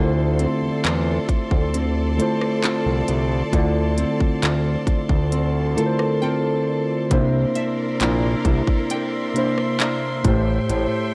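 A slow, straight 4/4 pulse at 67 BPM anchors this moody, sensual contemporary R&B excerpt in D minor, with a trap drum kit entering at 0.4 seconds to lay down handclaps, crisp hats, rim clicks and a hard-clipped kick, all roughened by vintage 12-bit sampler grit and sitting up front. Beneath it, a fat analog bass, thick, nasal and saturated, holds the low end alongside muted felt-like synth keys whose soft, dark tone is thickened by chorus. A fingerpicked nylon-string guitar weaves full-bodied classical arpeggios through an analog delay, while a clear studio string section sustains lush, bowed chords with vibrato from a distance. The harmony rests on Dm7 before shifting to C9 at 7.1 seconds and Am7 at 10.2 seconds, and a glassy wavetable pluck, crystalline and treated with chorus and delay, glints in the background in a brief flicker at the very opening and again from 6.2 seconds. The whole is captured as a dry, gritty hardware recording set in digital ambience.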